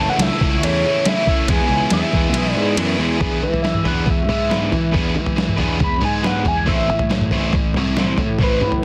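Jangly and upbeat, this indie rock cut moves at 139 BPM in a straight 4/4, centred on E mixolydian with chords shifting from A to E, then E7 and Am. A gritty, screaming synth lead with a guitar-like sawtooth edge carries the melody, coloured by chorus, vibrato, plate reverb and digital delay, and it takes over as a solo from 3.2 s. Beneath it, a bright, high-gain distorted guitar with analog chorus and delay plays a riff alongside a darker overdriven electric guitar riff, while a fuzz-drenched picked bass adds weight. A lo-fi, sampler-style drum kit sits up front with a muffled, pitched-down, thumpy kick, a medium-tuned snare, ride and toms, and its kick and snare drop out briefly from 2.8 s. In the background, an ethereal glass harmonica holds glassy, slow-blooming chords through the opening section until 3.2 s, all within a lightly reverberant, dense and heavily limited modern master.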